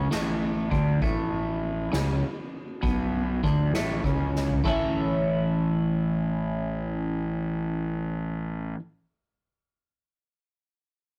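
A bright, twangy twelve-string electric guitar with phaser leads this trippy, kaleidoscopic psychedelic rock excerpt in A major at 66 BPM in 6/8, playing a riff over a punchy fuzz-overdriven fingered bass and a soft-mallet drum kit with dark cymbals and a boomy kick, which plays a fill at 4.4 seconds and drops out at 4.8 seconds, leaving guitar and bass in a rough rehearsal-room sound with light reverb and saturation.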